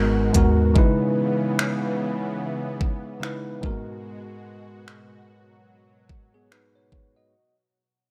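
A bell-like, bright tine electric piano sits up front in this moody, longing contemporary R&B excerpt, moving from G#m7 to C#m7 and back at 3.6 seconds over a thick, nasal, detuned sawtooth pad with chorus and sidechain pumping. A soft, round 808-style bass sounds only in the opening 0.7 seconds, and a trap kit enters at 0.3 seconds with finger snaps, crisp hi-hat and a knocking, overdriven kick. The drums have a small-room character, light reverb colours the mix, and the whole passage fades out across its length, with a lightly swung 16th-note feel.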